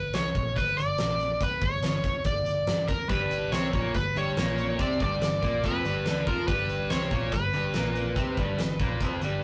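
A rough, tube-saturated rehearsal-room sound with a moderate booth ambience frames this gritty, driving blues rock and southern rock power-trio fragment at 142 BPM in 4/4 around G, where a bright, fingerpicked slide guitar carries the melody up front over a dark, round, foam-muted picked bass and a huge arena drum kit with a fat snare and punchy kick, joined at 3.1 seconds by a cranked, double-tracked stack guitar playing an overdriven riff.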